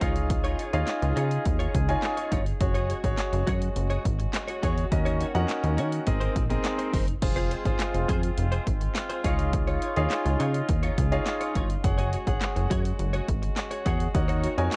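A punchy analog drum machine sets a straight, carefree dance-pop groove in 4/4, its dry kick and snare sitting up front with hi-hat, handclaps and crash cymbal. Beneath it, a funky analog bass built from sawtooth and square waves snaps in with a fast-attack filter pluck that decays, breathing with sidechain pumping. A concert grand piano carries the accompaniment in an intimate, polished tone with audible action noise and long sustain, pumping along with the bass, while a direct-recorded electric guitar picks a clean, compressed riff thickened by ensemble chorus. A loose, vintage brass section holds sustained chords in the background, also pumping, over a summery progression of Dbadd9, Gbsus2, Ebm7, Abadd9 and Fm, with the phrase beginning again at 7.2 seconds. The dry mix has a worn, warbling cassette-tape character with audible pitch drift, and this short excerpt is cut from a longer piece.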